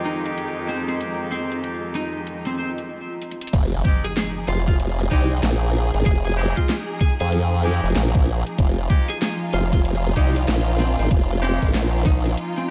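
A gritty, swaggering glitch hop passage sits under light reverb, with a swung sixteenth-note feel, cut from a longer piece. From the start, a dark, woody string section holds lush sustained chords and an ethereal, airy pad stays mellow in the background, both pumping against the sidechain, while a bright, punchy horn section fires vintage stabs through delay and a filter sweep. A slightly broken-up electric lead guitar carries the melody with delay, and a tape-warm dubstep kit adds a huge snare, metallic hats and crash, followed by a short break and drum fill. At 3.5 seconds the drop arrives with a very quiet electronic impact, an up-front knocking kick, and a saturated, wobbling formant-sweep bass with chorus. The strings and pad carry on to the close, while the horns stop at 11.7 seconds.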